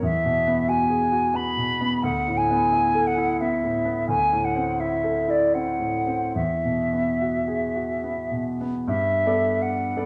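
Classical impressionist music for flute and grand piano in a dreamy, luminous mood, this short cut from a longer piece drifts in rubato 3/4 between 68 and 93 BPM in E major, with a pure, hollow silver flute singing the melody with vibrato and a crisp attack over a clear concert grand whose deep bass and open voicings move through Eadd9, Dsus2 and D9 before shifting to Gmaj9 at 8.9 seconds, both instruments up front within a wet recital-hall reverb.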